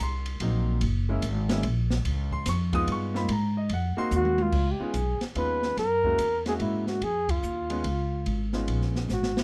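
A breathy, dark flugelhorn carries the melody with vibrato, entering at 4.2 seconds and sitting up front in a close, intimate sound. This is relaxed small-group swing and bop jazz in 3/4 at 145 BPM, with a gentle swing on the eighth notes and a mellow, easygoing mood. Beneath it, a warm baby grand piano comps ninth chords that move between Ab9, Gb9 and Db9. A woody, growly upright bass, played pizzicato, stands out prominently. The acoustic drum kit has a boomy kick, a medium-tuned snare and smooth, dark cymbals, and it plays a fill around the horn's entrance, while the whole band hits an accent at 7.2 seconds. The recording is dry and detailed, captured with close microphones and little reverb, and this short excerpt is cut from a longer piece.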